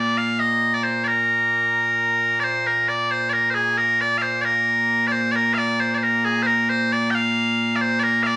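Stirring and ceremonial, this brief fragment of Scottish traditional music moves in a straight 6/8 at 89 beats per minute in B-flat major. A solo bagpipe carries the whole passage, loud, bright and piercing, sounding as one continuous, up-front line that spans a broad register. Moderate studio reverb gives the pipes some air, and the tune shifts into a new section at 2.4 seconds before breaking off at 8.4 seconds.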